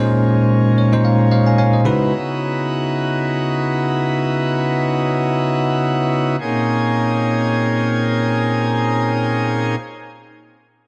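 A bell-like tine electric piano and a pipe organ principal chorus open this short amapiano excerpt together in free time. The piano's bright, clean tone sits up front as it plays accompaniment and a fill from 0.5 to 2.1 seconds before stopping. The organ holds full, romantically voiced sustained chords until 9.8 seconds, moving through rich minor eleventh harmonies in a soulful, hypnotic mood. A lush hall reverb surrounds the parts, and the master is dense and heavily limited.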